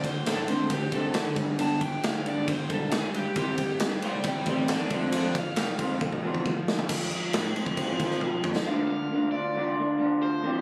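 A phone-in-the-room recording with compressed small-room studio ambience captures this restless, moody indie rock excerpt in D minor at 136 BPM, where an overdriven semi-hollow guitar solos warmly over a bright, twangy, slightly broken-up riff guitar with analog chorus, a dark, round fuzz bass sitting in the background, and a punchy, up-front big rock drum kit with bright cymbals that throws in fills before dropping out at 8.7 seconds, leaving the two guitars to carry the final D minor chord.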